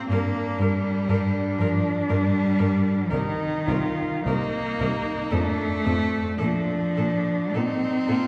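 Swaying in a rubato 3/4 between 50 and 61 BPM, this lyrical classical piece for cello ensemble unfolds in G minor with a yearning, elegiac mood, tuned to A4 = 438 Hz. Across a brief 8.3-second fragment of a longer work, a rich, close-sounding cello carries the accompaniment up front, while a warm cello sings a smooth, even second line just above it. The melody, played on a clear, intense cello with vibrato, sits in the background from 0.1 s, and a distant, steady bass cello supports everything from below. Each part is a single bowed player with vibrato, and the harmony moves through Gm, Cm7, F and Bb. A lush concert hall reverb with a long 2.3-second tail places the listener further back in the room, lending the ensemble a spacious, mournful glow.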